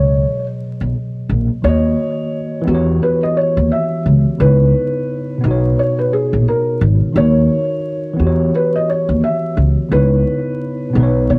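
Lo-fi hip hop at 87 BPM in B major with a swung 4/4 feel, this nostalgic, dreamy excerpt cut from a longer piece sets a felt-muted upright piano melody, dark and intimate with audible action noise, over a worn, slightly out-of-tune tine electric piano, both filtered and tape-softened, while a woody, thumpy pizzicato upright bass sits up front, all in a small room recorded to cassette with vinyl crackle as chords like D#m7, Em6 and C#m9 drift by.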